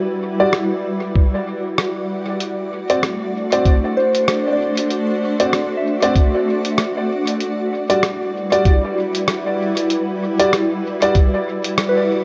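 A granular cloud pad opens the piece with blurred, full-bodied Em9 chords in E minor, joined almost at once by worn, slightly detuned upright piano stabs trailing dub echo and a muffled lo-fi kit of hi-hat and rim click, with a thumpy, up-front electronic kick arriving at 1.2 seconds. This meditative ambient dub excerpt moves at 96 BPM in 4/4 with a 16th-note swing, passing through D7 before returning to Em9 at 7.4 seconds. From 4.0 seconds a soft FM bell adds pure, mellow arpeggios through chorus, phaser and dub echo, all bathed in a huge reverb, and a brief band accent lands near the end.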